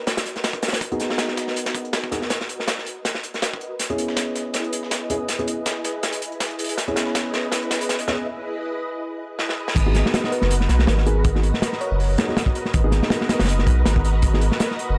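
Drum and bass with a jungle edge at 161 BPM in G# minor, this frenetic yet atmospheric excerpt opens on a silky string machine pad under a filter sweep, with dark, boxy grand piano stabs carrying dub echo and a crunchy, up-front breakbeat kit backed by a dusty, overdriven sampler kit in the background. Drum fills drive the build-up over G#m7 and C#m7 chords until a short break at 8.3 seconds. At 9.8 seconds the drop lands with a thick, saturated sub bass, and a bell-like FM electric piano adds a sparkling, chorused melody from 10.3 seconds, all in light small-room ambience.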